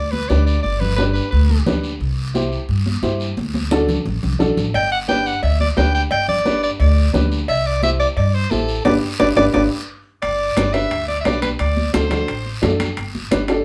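A straight 4/4 cumbia groove at 175 BPM in G major drives this joyful, sunny Latin excerpt, with a woody, thumpy pizzicato upright bass up front, bright, high-tuned congas struck with hard hands, a raspy, distant guiro and a dark, boxy, slightly detuned upright piano in accompaniment, while a punchy, forceful soprano saxophone with vibrato leads the melody, breaks off at 1.6 seconds and returns at 4.8 seconds, just after ringing metal-shell cowbell and timbales join at 4.7 seconds, the whole band playing live in a small reverberant room, with drum fills and a band accent leading into a new section.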